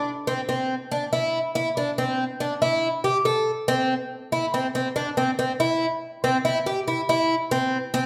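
In a straight 5/4, this brief, intricate and tense progressive instrumental fragment features a solo picked twelve-string acoustic guitar sitting up front with a shimmering, octave-doubled and slightly boxy tone, finger squeaks audible over fresh strings, as a new section begins at 3.7 seconds within the wet reverb of a large studio room where the band plays live together.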